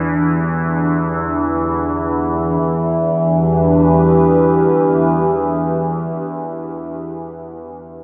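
An unsettling, desolate dark ambient drone in E minor and free time, cut from a longer piece, opens with a bright, up-front overtone-sweeping drone, ring-modulated and resonant with moving overtones, beneath a deep, detuned, wave-folded analog pad holding sustained chords until 7.3 s, both treated with chorus and suspended in a vast, echoing space.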